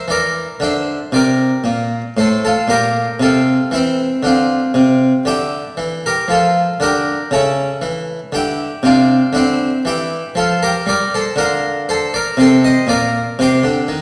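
A bright, close-miked harpsichord sits up front in a reverberant recital hall, its plucked, full Italian-style tone ringing with octave strings. This serene, dance-like baroque-style suite movement in 3/4 moves at a slow 59 BPM with a rubato feel, the solo harpsichord spanning A2 to E5. Cut from a longer piece, the 14-second passage begins unaccompanied by harmony, then moves through Bbadd9, F/A and D minor before closing on C minor.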